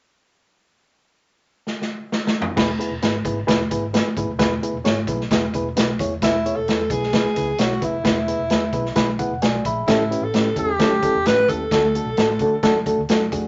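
A straight 4/4 groove anchors this uptempo 1960s-style soul cut, taken from a longer piece, with an uplifting mood. A swinging big-band drum kit opens with a fill at 1.7 seconds, its boomy kick, medium-tuned snare, dark cymbals, hi-hat and toms sitting up front in a natural big-room sound. At 2.6 seconds the harmony arrives on E as a reedy, worn electric piano, lightly overdriven through its built-in speakers and slightly out of tune, joins a round, punchy, foam-muted fingered electric bass with an amped vintage tone. At 6.2 seconds a breathy alto saxophone takes the solo melody up front, playing in a clear jazz-style subtone with light vibrato while the electric piano adds a fill and the chords move through A7 to D. A moderate club reverb and a soft, rolled-off top end give the whole recording a mellow, intimate glow.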